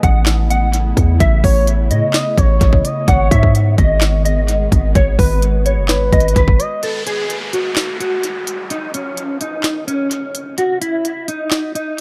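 A half-time trap groove at 128 BPM drives this menacing, hard-hitting hip hop excerpt in G# phrygian, with an up-front electronic drum kit of hard-clipped kick, sharp snare, crisp hi-hats and handclaps carrying a tape-warm bite from start to finish. Beneath it, a punchy, heavy 808-style bass with a fast attack and decaying tail holds the low end until 6.6 seconds, while an ethereal, airy pad, detuned and wave-folded with a slow attack and long release, sustains chords through ensemble chorus and its own reverb over a move from Aadd9 to G#m. A dark, clean, fingered electric guitar sits up front with the melody throughout, softened by a low-pass filter and trailed by ensemble chorus and dub echo. From 1.4 seconds a smooth, gliding portamento lead adds a second line with vibrato, chorus and dub echo. At 6.8 seconds the harmony drops out into a break where the drums and guitar continue and an electronic downlifter falls through the mix, all set in a dry space dominated by echo.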